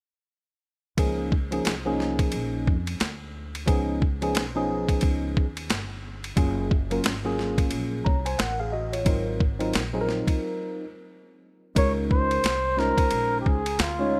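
Cool and smooth, this swung jazz-hop excerpt at 89 BPM in Db major pairs a worn, slightly out-of-tune tine electric piano with analog chorus and a woody pizzicato upright bass over a gritty, pitched-down boom bap kit with a thumpy kick and high-tuned snare, moving through Db69, Gbmaj9 and Ab13 chords before a break at 10.4 seconds gives way at 11.8 seconds to a breathy, mellow flugelhorn solo with vibrato and slapback echo, all set in light digital reverb.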